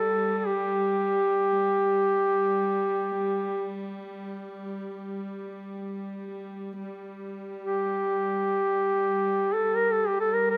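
Close, detailed microphones and a light reverb give this short fragment an intimate, present sound. It is a Caucasian folk lament, longing and mournful in mood. A mellow duduk carries the melody as a solo voice, placed up front, its scooped notes and smooth top staying within the span from G4 to Bb4 in a folk style. Beneath it, a chamber string section holds a low drone on G3, bowed with light vibrato, its tone rich and earthy and set well below the lead. The opening phrase runs to 6.8 seconds and then returns for a second statement that carries through to the cut at 10.6 seconds, with both parts sounding from start to finish.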